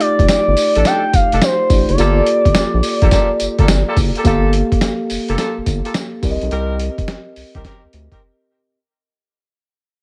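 Punchy and slick, this short R&B cut in new jack swing style moves at 106 BPM in 4/4 with a swung sixteenth feel, set in G minor over chords of F13, Gm9 and Cm7. A smooth, warbling portamento lead carries the melody with chorus and vibrato, singing between C5 and G5 before it drops out at 3.9 seconds. Beneath it, a mellow tine electric piano with a clean, speaker-colored tone holds the accompaniment, while a round, deep analog bass with a fast attack and dark sustain enters at 0.2 seconds. The dusty, sampler-style kit sits up front with a thumpy kick, medium-tuned snare, hi-hat and tambourine, its gritty, tape-warmed sound compressed and re-recorded in a small room. A tight, vintage jazz-style horn section adds light-vibrato stabs from 0.8 seconds, the mix stays dry with little reverb, and the whole fades from 4.2 seconds into a brief break at the end.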